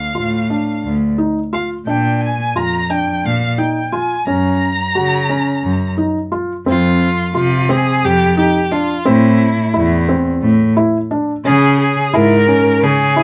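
A bowed violin with vibrato opens this restless, pensive passage of contemporary chamber music in 7/8 at 175 BPM, carrying a smooth, distant melody while a felt-muted upright piano adds mellow, intimate arpeggios and a dark, pure-toned cello holds the bass up front, all in a moderate booth ambience as the harmony moves from Dm through Gb and F5 to a closing Dbm.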